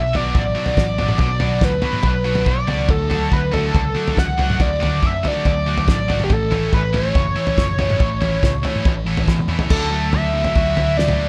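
A dark, warm mix with little reverb opens this short indie rock excerpt, which moves at 141 BPM in a straight 4/4 in D major and feels carefree yet wistful. Up front, an overdriven synth lead carries the melody with a gritty, screaming, guitar-like tone, sustained notes and vibrato. Beneath it, a thick fuzz guitar plays a low riff in the background, while a scooped high-gain guitar adds a brighter riff coated in lush chorus. A picked electric bass gives a round, amped low end, and a cloth-damped acoustic drum kit thuds along with a fat snare, tight kick, toms and dark crash cymbals in a small-room sound. The harmony moves from Bm to D and A, then a drum fill at 9.3 seconds leads into a new section on Dadd9 at 9.7 seconds.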